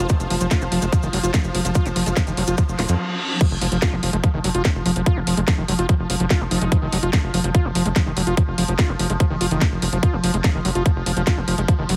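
Alien and hypnotic, this psychedelic trance excerpt drives at 145 BPM in straight 4/4, with a tight electronic kick up front, a garage drum kit with cracking snare and crash, a punchy sawtooth sequencer bass, and a squelchy, distorted acid bass riff over a swarming, detuned drone on F3 that pumps to the sidechain. Bright, biting strings and close, grainy maracas colour the opening seconds before a short break at 3.0 s, while a reverse cymbal that begins at 2.8 s rises into a drop and impact at 3.4 s that leaves the harmony open. Zaps and effects sit in the background, a metallic FM wobble bass with chorus and tape echo surfaces briefly around 5.8 s, and the whole track carries a dry, heavily compressed radio sound.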